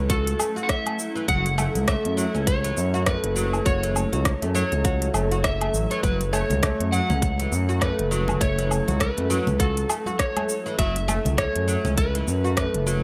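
Meditative and earthy, this organic downtempo excerpt swings gently over a single F#m7 chord, with a smooth, sawtooth-edged synth bass gliding up front beneath a cloudy, blurred granular pad and a barely audible quartz singing bowl that rings with a pure, dark tone. A dark, slightly broken-up electric slide guitar carries the melody through digital delay, while a woody, fretless oud plucks arpeggios through tape echo. A tight, overdriven electronic kick and a crisp-hatted electronic kit of cabasa, hi-hat, rim click and woodblock drive the groove, and close, dry congas join in the background at 6.2 seconds, all in a light reverb.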